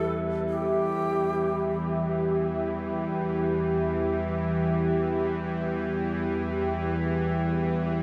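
A breathy, bamboo-toned shakuhachi with analog delay sounds a brief melody between G4 and A4 in the first 2.1 seconds of this unsettling, desolate dark ambient drone in E minor and free time, while a tense, string-like bowed drone fades in over the full 8.0 seconds beneath a deep, warbling pad holding sustained, chorused chords, the mix steeped in a wet, echo-heavy spring reverb.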